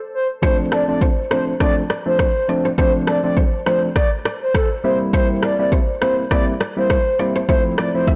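A hollow, woody clarinet-like synth lead with chorus, delay and vibrato opens this smooth, mellow afrobeats excerpt in D minor at 102 BPM at 0.1 s, before soft, round electric-piano-like synth keys with chorus, a bright, fingerpicked kora riff ringing through delay, and an up-front electronic afro-pop kit with a deep kick, rim clicks and a softly clipped snare join at 0.4 s over a gently swung Dm7 to C7 to Fmaj7 progression, all within a blown-out, overdriven recording touched by light digital reverb.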